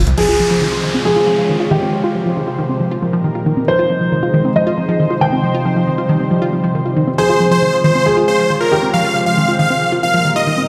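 Trance with an emotional, soaring mood, cut from a longer piece: a detuned sawtooth pluck with a noise layer runs punchy arpeggios through a filter sweep and tape echo, while a thick, chorused unison pad holds slow-attack chords beneath it. A dark, worn baby grand piano with audible action noise adds a boxy, intimate second line through dub echo, and an electronic downlifter passes through the opening until 3.7 s. At 7.2 s huge, bright supersaw chords take the melody up front, all set in a big, bare room with large studio reverb and digital ambience.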